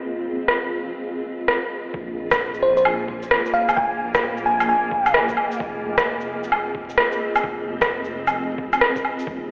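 Filtered into a telephone-like, low-passed haze with vinyl crackle and a huge stone-room reverb, as if played over a big sound system in a bare room, this melancholic, rainy future garage excerpt at 131 BPM in F minor swings its 16ths and opens with a filter sweep over a cloudy, granular pad pumping under sidechain, joined at 0.5 s by up-front, tape-warm electronic rim clicks, shaker and woodblock, then at 1.9 s a thumpy, pitched-down kick and a dark, rumbling detuned saw bass with tube saturation arrive as the harmony moves to Fm7, while a sparkling, bell-like FM electric piano with chorus and tape echo carries a brief melody from 2.6 s.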